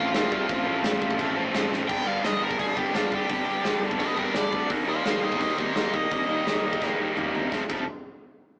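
Rebellious and energetic, this short punk rock cut drives along at 170 BPM in a straight 4/4, tuned to A4 = 441 Hz, moving from F/A to G, Eb and back to F. A double-tracked, distorted electric guitar picks out the riff up front beside a punchy, big-room acoustic drum kit with a medium-tuned snare, while a growly picked bass sits in the background and a bright, overdriven cranked stack guitar takes a solo from 1.9 to 7.5 seconds. A drum fill arrives at 1.7 seconds and another near the close, all with the rough, saturated feel of a rehearsal room heard through a small speaker, touched by light reverb.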